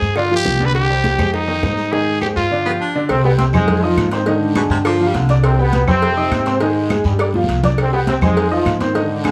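A straight 4/4 salsa groove at 205 BPM drives this passionate, danceable cut in C harmonic minor, anchored by a thumpy, gut-strung upright bass up front and a bright upright piano with audible action noise. High-tuned congas, tight bongos and cowbell, woody claves and a raspy, saturated guiro sit in the background. A growling, gritty trumpet opens the melody with plate reverb, a baritone saxophone with vibrato adds a second line from 2.7 s, and a clear trombone section takes over the melody at 3.1 s, with a drum fill arriving at 7.3 s.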